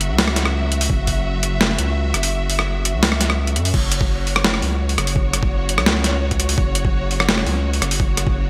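A half-time drum and bass groove in 4/4 carries this short cinematic, spacious cut from a longer piece. A boom bap sampler-style kit sits up front with hi-hat, rim click, a medium-tuned snare and crash cymbal, gritty and overdriven with gated reverb, as if re-recorded in a small room. A thumpy, compressed electronic kick appears only briefly near 0.9 seconds, then returns at 3.7 seconds to anchor the second pass. Beneath it, a deep, thick sine sub bass holds sustained notes, saturated and pushed forward with a fast attack. A distant symphonic string section plays lush bowed chords with vibrato, focused and clear yet roughened by vintage 12-bit sampler grit and pumping against the sidechain. Light digital reverb and a bright 1980s-style production sheen frame the whole mix.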